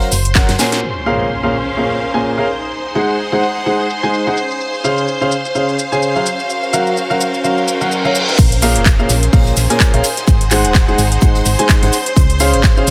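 Piano house at 127 BPM in Bb minor, this soulful, energetic passage is cut from a longer piece and rides a swung 16th-note groove. A concert grand piano, up front with deep bass and tape echo, plays a riff throughout, pumping against the beat alongside a shimmering, sawtooth string machine holding high sustained violin chords through ensemble chorus. After a brief drum fill and band accent, an electronic impact lands at 0.8 seconds and a lush, bowed symphonic string section enters with vibrato, while a filter sweep works on the house kit's cracking snare, metallic hats, handclaps, shaker and crash over a Bbm7, Ab7, Dbmaj7 and Gbmaj7 progression. A reverse cymbal rises into the drop at 8.4 seconds, where a punchy, up-front electronic kick, a round, dark FM bass with fast attack, and a very quiet, gritty, oversized low-tuned kit with a fat snare all return after brief appearances at the very start. 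Light studio reverb frames the mix, and the bass and strings breathe with sidechain pumping.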